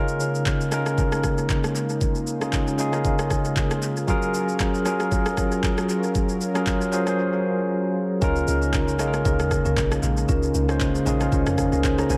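Amapiano at 116 BPM in Db major with a soulful mood, where a clean, up-front tine electric piano with analog delay and a soft-attack sawtooth pad with chorus carry the chords from the start, an overdriven smooth R&B drum kit with knocking kick, handclaps, rim click and shaker joins at 0.1 s, and after a silent gap a woody rosewood marimba with medium mallets and a deep, round log drum bass enter at 8.2 s, all set in an echo-heavy mix with spring reverb in this cut from a longer piece.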